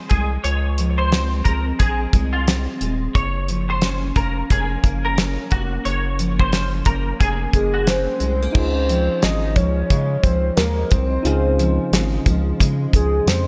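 A damped 70s drum kit sits up front with a fat snare, tight kick and dark cymbals, setting a laid-back, nostalgic indie and bedroom pop groove at 89 BPM with a swung sixteenth feel over Dbmaj7 and Gbmaj7 chords in this excerpt. A round, deep analog bass and a full-bodied picked steel-string acoustic guitar, its chorus carrying a warbly pitch drift, form the foundation, while a bright, clean semi-hollow electric guitar with slapback echo and delay plays a second line until 7.9 seconds. A detuned, vibrato-laden synth lead takes the melody from 7.6 seconds, joined at 8.5 seconds by soft, mellow electric-piano-like keys with a cassette-tape tint in the background, inside a light studio reverb.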